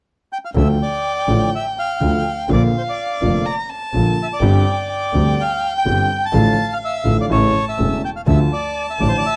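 Pulled freely in rubato over a 4/4 tango pulse, this dramatic, tense fragment of a longer piece opens with a reedy, dark bandoneon carrying the melody up front from 0.3 seconds. A bowed double bass, biting and nasal with light vibrato, anchors the low end, while a single violin adds an expressive second line with soft attacks and portamento, and a smooth vintage grand piano with deep bass fills out the accompaniment through a minor-key progression that settles back home by 8.3 seconds. The sound is dry and close, like a 1970s studio session with little reverb.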